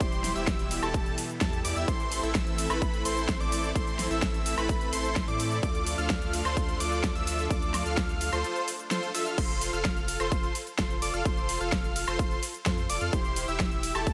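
An anthemic, euphoric festival progressive house drop opens at full force, with a punchy, overdriven electronic kick up front, a big-room drum kit built around a huge snare with crash, ride, hi-hat, cabasa and woodblock, a deep saturated sub bass, and huge detuned supersaw chords playing a riff with delay and 12-bit sampler grit. High above, a bold sawtooth unison lead spins arpeggios with vibrato and delay, while a warbling, chorused vintage pad holds sustained chords until it drops out at 9.3 s. Pumping sidechain gives the synths and bass their surge, light reverb frames the mix, and the chords move from C/E through Am and Dm to F before returning to C/E.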